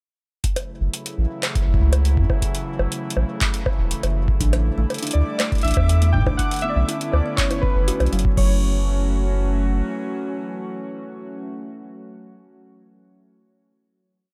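Melancholic and glitchy, this short IDM piece moves at 121 BPM in F# phrygian, its warbling, nostalgic tape-like pad holding sustained chords from F#m7 through A7sus4 and Bm11 while a deep, round sine sub bass skips in a syncopated line and an overdriven kick with a booming analog drum machine of metallic hats, bongos, claps and crash build an ever-changing, broken beat that stops at 8.5 s. From 4.4 s a woody kalimba loops a five-step arpeggio with tape echo in the background, joined by a bubbling, resonant stepped-filter texture on a held high note and dark, full-bodied lo-fi synth keys playing a motif-based melody with chorus and delay. The groove gives way at 8.4 s to a final F#m7 chord, with the pad and keys ringing on until 11.4 s in a dry, close mix.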